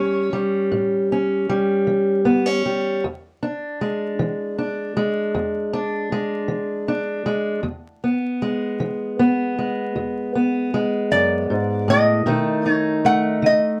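A dark, warm production with a touch of vinyl crackle and moderate studio reverb frames this short cut from a longer acoustic country blues piece, gritty and swaggering in mood. It moves slowly at 52 BPM in a straight 12/8, rooted in E mixolydian. A fingerpicked steel-string parlour guitar sits up front for the whole 13.8 seconds, its boxy, shadowed tone carrying the accompaniment from low E2 up to D#4 over changes from A7 to E7 and finally B7 at 12.3 seconds. A metal-body resonator slide guitar, played with fingerpicks, flashes briefly at the very start and then returns at 11.1 seconds to carry the melody in a narrow high range, its voice bright, metallic and nasal. The contrast between the resonator's cutting edge and the parlour guitar's boxy darkness gives the excerpt its character.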